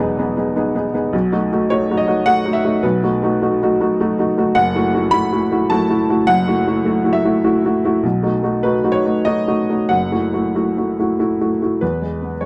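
A worn, woody upright piano, slightly detuned and sitting up front, plays alone across this brief 12.5-second fragment of a longer neoclassical minimalist piece, ranging from E1 to B5. The mood is melancholic and wistful, in a rubato 3/4 that drifts between 92 and 107 BPM, set in F# dorian with tuning at A4 = 438 Hz. Harmonies move from Emaj7 through B7 and F#m7 before settling on E at 11.8 seconds, all wrapped in light reverb and a dark, warm production.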